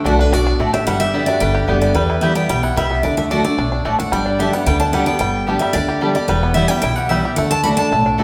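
A bright jumbo acoustic guitar carries the melody up front with audible finger squeak in this driving, virtuosic bluegrass excerpt in G major at 221 BPM, backed by a full-bodied dreadnought guitar, twangy banjo arpeggios, mellow double-strung mandolin stabs, a nasal slide resonator line heard only from 0.1 to 1.7 seconds, and woody pizzicato upright bass, all playing live together in a stone room with reverb.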